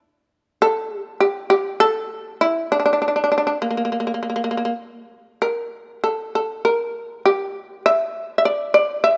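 A lone shamisen, plectrum-plucked and buzzing with a percussive bite, enters at 0.6 s and carries this meditative, solitary excerpt of Japanese traditional chamber music, ranging from Bb3 to E5. The playing moves freely in rubato around a slow 50 BPM pulse in 2/4, with the tuning set to A4 = 442 Hz. Close, detailed microphones place the powerful fretless instrument up front in a light reverb, so every attack and rasp comes through clearly.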